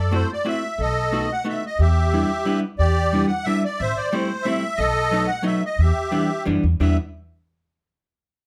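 A reedy musette accordion and a woody, pizzicato upright bass open this whirling, bittersweet musette waltz together, and a clean archtop guitar joins at 0.1 seconds. The piece moves in a brisk 3/4 at 180 BPM with a straight feel, set in E minor and cut from a longer performance. The close-miked accordion carries the melody between G4 and F#5, its musette tuning giving a shimmering, full, dry tone. Underneath, the thumpy gut-string bass holds the low end, while the picked hollow-body guitar adds dark electric accompaniment. All three sit up front, in moderate studio reverb heard from further back in the room, as the harmony turns from F#m7b5 through B7 to Em7, then passes through Am7 and B7 before settling on Em7 again at 5.8 seconds.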